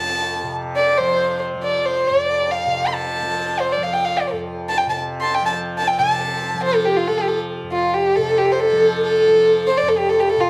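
Indian classical music in a meditative, serene 7/4, cut from a longer piece, where a single dark, woody bowed violin carries the melody up front with vibrato and a sul tasto tone over the mellow, buzzing, shimmering drone of a softly plucked tanpura, both sounding throughout inside a reverberant recital hall.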